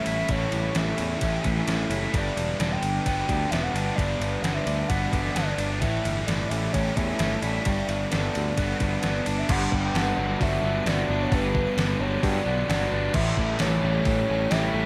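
A lightly reverberant, blissful and wistful slice of shoegaze-leaning dream pop rock, where a breathy sine lead with chorus and analog delay sings over an icy, crystalline pad, a very quiet compressed clean guitar picking arpeggios, background riffs from a crunchy overdriven guitar with reverse reverb, a double-tracked semi-hollow guitar and a dark fuzz guitar, a round overdriven bass, and an up-front gated 80s drum machine with a thumpy kick and overdriven gated snare, moving between A7 and Gmaj7.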